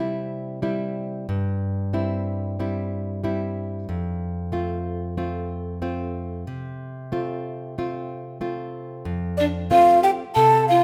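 A hollow, wooden large quena, close-miked and up front with vibrato and tongued notes, carries the melody from 9.4 s over a breathy bamboo pan flute with a chiff on the second line, while a small, bright fingerpicked nylon-string guitar plays accompaniment from the start, moving from C to F in this earthy, festive Andean folk passage cut from a longer piece and set in light reverb.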